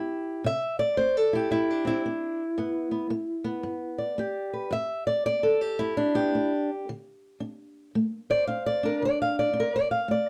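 Swaggering and rollicking, this brief excerpt of acoustic country blues in G mixolydian swings along at 112 BPM in 4/4, with a single fingerpicked, ladder-braced acoustic guitar on old strings sounding woody and boxy up front as it moves from C to G to a bare D7 within a moderate studio reverb and a dark production.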